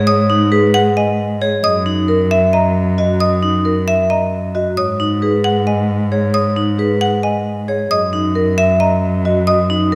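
A wet scoring-stage reverb surrounds this hypnotic, bright passage of minimalist classical pattern music, cut from a longer piece and moving at 268 BPM in eighths through a straight 7/8 metre. A bowed cello played by one player sits up front as the bass, its tone rich, smooth and even with vibrato. Above it, a marimba struck with soft mallets carries the melody in a mellow, round voice with the boxy quality of a small room. A vibraphone played with hard mallets adds metallic, ringing arpeggios shaded by a medium motor vibrato. A xylophone with plastic mallets enters at 0.1 seconds with its own arpeggios, close-miked, dry, sharp and percussive. The harmony alternates between G#m7 and F#7 throughout.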